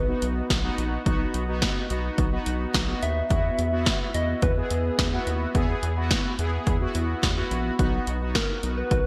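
A bright, 1980s-style digital production in a lush hall, marked by lossy compression artefacts, carries this wistful synth-pop excerpt at 107 BPM in B major, where a round, warbling FM lead sings the melody over fat, detuned synth brass, a rubbery square bass and a punchy analog drum machine with gated reverb, the drums entering at 0.2 s as the chords move from B to Esus2 and back.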